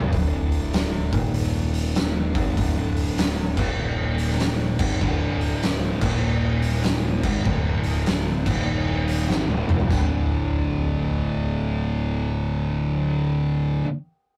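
A thick, dark fuzz guitar riff opens this brooding stoner and doom metal excerpt alongside a growling, bright, punchy overdriven bass and an oversized low-tuned drum kit with a boomy kick, fat snare and dark cymbals. The hypnotic riff rocks between D5 and Eb5 in a swung 4/4 feel, while the drums sit up front with a saturated, gritty sound in a big, pumping room. A second distorted fuzz guitar, warmer and set in the background, joins the first from 5.0 seconds to thicken the riff. A drum fill at 9.3 seconds coincides with a Dm chord before the music returns to D5, and the kit stops at 10.1 seconds while both guitars and bass ring on. The whole take has the rough feel of a rehearsal room with a short, wet booth ambience.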